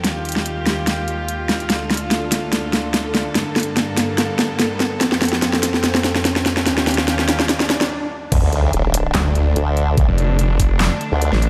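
A half-time 145 BPM swing drives this aggressive, menacing heavy wobble dubstep excerpt in D phrygian, where floating bowed chamber strings with vintage sampler grit and sidechain pumping sustain chords under an overdriven drum kit with a huge up-front snare, handclaps, hi-hat and crash, and a very quiet riser, swell and sub drop build tension until the drop at 8.3 s unleashes a knocking overdriven kick and an up-front formant-sweep wobble bass with chorus, joined at 9.1 s by a growling, bright, detuned distorted saw bass.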